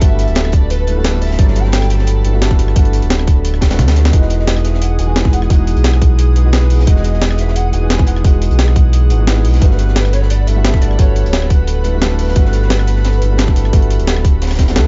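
This liquid drum and bass excerpt opens at 175 BPM with everything at once: a tight, up-front electronic kick, a gritty, pitched-up sampler-style breakbeat kit with hi-hat, rim click, snare and toms, and a saturated, rolled-off second breakbeat kit of hats and snare sitting in the background. A deep sine sub bass with octave plays alongside a dark, mellow concert grand piano with a touch of digital delay, while an airy, breathy detuned pad holds chorused chords and a hollow, woody clarinet-like synth lead carries the melody softly behind them, shaded by phaser, chorus, vibrato and delay. The uplifting mood moves from Gmaj9 to Emaj9 at 4.1 seconds, just after a brief drum fill, and returns to Gmaj9 at 9.6 seconds, all in a dry, dark, warm mix.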